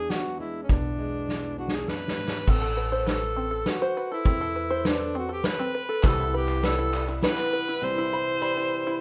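A clear, up-front tenor saxophone sings the melody with a classical-style vibrato from the first moment, over a full-bodied fingerpicked jumbo steel-string guitar, a thumpy, woody pizzicato upright bass and a soft-mallet drum kit with a punchy kick and a rolled-off top. This uplifting, nostalgic slice of indie folk moves in a straight three-beat metre, and the arrangement keeps building as the chords pass from E7 to Amadd9 to Cmaj7. A drum fill leads into the next section at 2.5 seconds, where the guitar drops out and a twangy, plunky open-back banjo takes over with fingerpicked arpeggios. At 6.0 seconds a boxy, picked swing-style acoustic guitar arrives alongside a mellow felt-muted upright piano with audible action noise, while a hollow group handclap sounds briefly in the background from a large room. The kit sits distant and roomy yet prominent in a rough home-demo mix with moderate studio reverb, and the passage is cut from a longer piece.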